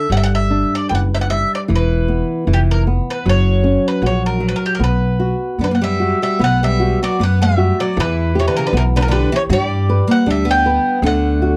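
Fado-style ballad in B harmonic minor at 77 BPM, a longing, mournful excerpt in a rubato 2/4 where an up-front bowl-back mandolin sings the melody on picked double strings over fingerpicked flamenco guitar with old, woody strings and a growly, pizzicato upright bass, joined at 5.6 s by a boxy parlour twelve-string with a shimmering, octave-doubled second line, all captured in a dry, close 1970s-style studio sound.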